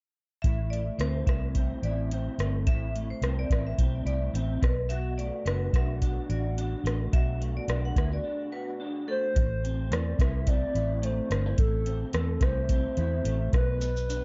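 The recording has a warm, dark production with light reverb and a rolled-off top end, giving this cut from a longer piece a hazy, wistful indie pop and bedroom pop feel with a gentle swing. A soft vintage rhythm box sits up front: its deep kick, metallic hats, rim click and shaker are overdriven and re-recorded in a large room. A muted fingered electric bass, round and foam-damped, holds the low end just as close. An electric guitar through a small old amp supplies slightly broken-up, picked, lo-fi accompaniment, coloured by ensemble chorus and a warbly pitch drift. In the opening stretch a ringing vibraphone struck with medium hard mallets carries a bright, airy second line with slow motor vibrato, subtle chorus and analog delay, leading into a break at 8.2 seconds. From 9.1 seconds a hollow, woody clarinet-like synth lead takes the melody, soft-attacked and sustained with vibrato, lush chorus and analog delay, as the vibraphone falls silent at 9.2 seconds.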